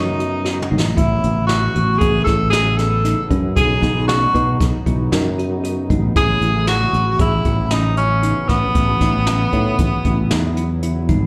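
Set in a straight 5/4 at 116 BPM, this excerpt of intricate, bright progressive band music in A lydian features a brush drum fill at 0.5 seconds, the acoustic kit pairing a boomy kick with a medium-tuned snare while a growly, punchy fretless electric bass with lush chorus sits up front. A clear tenor saxophone carries the melody with light vibrato and scooped notes, its roomy tone marked by slapback echo and digital delay, until it drops out at 10.8 seconds. Behind it, a bell-like tine electric piano plays arpeggios and a brassy, detuned sawtooth pad with a soft attack and filter swell drifts under chorus, moving from B7 through Amaj7 to a closing Aadd9(#11), all heard as a live gig through a club PA with small-room ambience.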